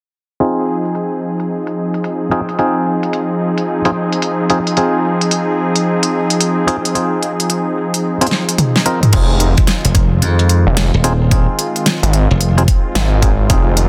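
Glitch hop with a swaggering, playful strut, set in 4/4 with a 63% swing on the sixteenths and cut from a longer piece. From 0.4 seconds a smooth, warbling analog pad holds sustained chords under chorus, its detuned sawtooth tone breathing with sidechain pumping, while a stringy, percussive clav fires stabs roughened by vintage 12-bit sampler grit, filtered, delayed and swept through a filter sweep. An up-front pop drum kit drives the groove with a fat snare, crisp hats, rim clicks, toms and crash, its cymbals, hats, snare and toms all softened by low-pass filtering, and a drum fill leads into the next section. At 9.1 seconds a gritty, nasal synth bass with aggressive oscillator-sync bite and tube saturation arrives alongside a knocking electronic kick, and a bright, punchy slap bass joins at 9.8 seconds. Light digital reverb surrounds the parts, and the master is dense and heavily limited.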